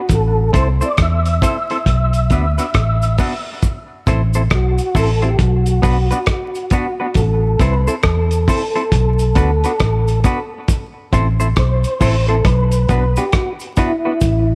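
A dark, round, foam-muted electric bass sits up front in this hypnotic, meditative roots reggae excerpt at 68 BPM with swung 16ths, cycling between Am and Bm beneath a muffled, cloth-damped drum kit of kick, hi-hat and rim click that sounds gritty and lo-fi. A mellow tonewheel organ carries the melody through overdrive, chorus vibrato, fast rotary speaker and tape echo, while a clean, compressed semi-hollow electric guitar adds accompaniment from 0.5 seconds with its own tape echo, and a cabasa sits in the background. Light reverb and vinyl crackle color the recording.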